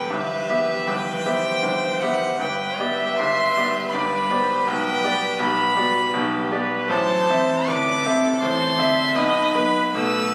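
Lyrical and serene, this slow romantic movement for piano quintet moves in a rubato 3/4 at 80 BPM, its uneven beats breathing through a passage cut from a longer piece that drifts from Em/G through G and Am to B. Up front, a pure, floating violin sings the melody high above a brilliant, polished grand piano accompaniment with short sustain, while a dark viola adds soft-attack, airy-bowed accompaniment played sul tasto. In the background a second violin and a cello trace intimate, lightly vibrated second lines, all held in a moderate recital hall reverb and captured on a phone in the room.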